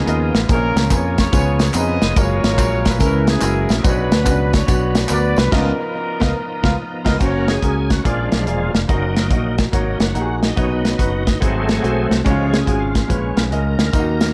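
A shouting, lightly overdriven tonewheel organ with fast rotary speaker takes a solo from 7.2 s in this soulful, uplifting uptempo gospel passage with a swung feel, after a distant, roomy horn section carries the melody until 6.8 s over brilliant baby grand piano with audible action noise, a round, punchy fingered electric bass, an up-front studio drum kit with a tight kick, and tambourine and handclaps, with a band accent landing at 5.5 s in an echo-heavy mix with light reverb.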